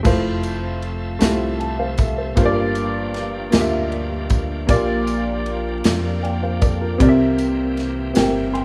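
Swaying in a slow 6/8 at 52 beats per minute on the dotted quarter, this short cut from a longer gospel piece in F major feels hopeful and jubilant, moving through Fmaj7, Gm7, Bb6 and C7 across its 8.6 seconds. A dark upright piano carries the accompaniment up front, its mellow, woody tone slightly detuned and intimate, with audible action noise. A modern studio drum kit sits equally forward, with a punchy kick, a medium-tuned snare, ride and crash cymbals, and an airy, polished studio-room sound. Beneath them a fingered electric bass adds a round, direct low end, while a bright tonewheel organ holds sustained chords further back, lightly overdriven with key click and a slow rotary speaker giving it a full, shouting edge. A jingly tambourine, close and dry, sits in the background, and the whole is wrapped in light reverb and small-room ambience, with the rough feel of a home demo, vinyl crackle and faint mains hum.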